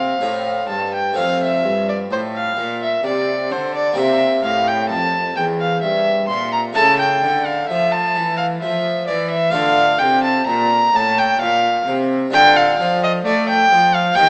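Serene and dance-like, this short passage from a baroque-style sonata movement with continuo moves at an unhurried 65 BPM in a straight 3/4, set in F major and tuned to A4 = 443 Hz. A single bowed violin carries the melody up front from C5 to C6, its rich gut-string tone coloured by light vibrato and period-style phrasing. Beneath it, one bowed cello holds the bass between E2 and A3 with a close, reedy sound. A close-miked, dry harpsichord in the French style fills out the accompaniment from E2 to A4, brilliant and full with its three sets of strings. The harmony passes from F to C7 at 4.0 seconds, then to A/C# and on to D minor at 9.5 seconds. A moderate concert hall reverb surrounds the ensemble, though the overall sound has the character of a small speaker.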